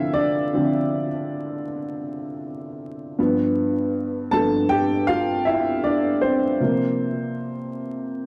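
Hip hop in a hazy, reflective mood, this short excerpt features a lone upright piano playing solo from start to finish, over about 8.3 seconds, with a lazy swung sixteenth-note feel. The piano sits up front with a dark, woody, mellow tone that feels vintage and smooth, and an analog delay trails behind its notes. Its harmony moves from Dm9 to G13 at 3.2 seconds and settles on C7sus4 at 6.6 seconds, spanning a range from low G2 up to A5. A short, wet studio reverb surrounds the piano, and the dark, warm production is coloured by a layer of vinyl crackle. Cut from a longer piece, it plays like a contemplative loop waiting for a beat and a verse.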